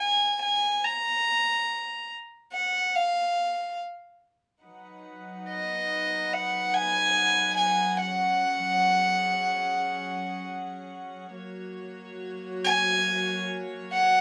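A lone bowed violin carries the melody from the very start, its warm, sul tasto tone soft in attack and floating up front between D#5 and A#5. This is a tender, nostalgic folk piece in F# major, moving at an unhurried 71 BPM in a straight 4/4. For the first 4.6 seconds the violin sings unaccompanied, and then a bowed studio string section slips in beneath it with sustained chords on B and C#sus4. The ensemble sits well back in the mix, its clear, pure voicings spanning F#3 to F#5. At 11.4 seconds the harmony settles on F# as a new section begins, and both parts carry on together in a moderate studio reverb until this fragment of a longer piece is cut off at 14.2 seconds.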